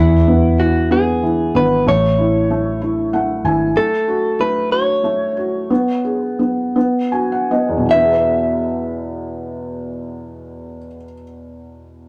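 A clean, compressed electric guitar carries the melody in this swaying, heartfelt pop excerpt in E major, picked and up front with a warm, direct tone. It moves in a gentle 6/8 at roughly 50 to 64 beats per minute, with a soft, felt-muted upright piano underneath that sounds mellow and intimate, adding short fills along the way. A dark, round, foam-muted electric bass gives a punchy, amped low end at the start but drops out at 3.7 seconds. The tempo gradually slows from 3.8 seconds until 7.9 seconds, where the harmony settles back on E after passing through A, F#m/A, G#madd11/B and B5. The guitar stops at 11.0 seconds, leaving the piano to finish. The recording has a rough rehearsal-room quality with saturation and a moderate studio reverb.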